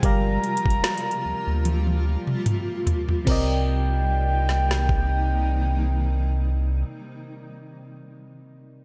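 Bright, 1980s-style digital production with a light reverb frames this late-night, longing slice of contemporary R&B, cut from a longer piece in C minor at 74 BPM with a gentle sixteenth-note swing. A soft, octave-layered synth lead carries the melody high in its register, its round, mellow tone treated with chorus, delay and vibrato. Beneath it, a glassy FM electric piano with a bell-like attack and a warbling chorus plays the accompaniment and lingers longest, sounding until 8.8 seconds. A cloudy granular pad holds blurred, evolving chords, bathed in its own reverb and pumping with sidechain. A deep sub bass sits up front alongside a produced electronic kit of knocking kick, woody snare, metallic hats, crash and toms drenched in gated reverb; the kit plays a fill from 1.6 seconds before the harmony moves from Gm7 to Cm7 at 3.3 seconds.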